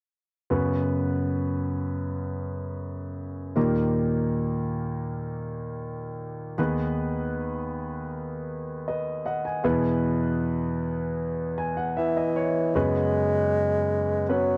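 A dry, close 1970s-style studio sound with light reverb frames this melancholic, longing pop piece cut from a longer work, where an intimate grand piano, its action noise audible and its notes ringing with long sustain, carries the chords from 0.5 seconds, plays a fill at 11.2 seconds, and is joined at 12.0 seconds by an up-front solo bassoon singing a mellow, classical-style melody with light vibrato.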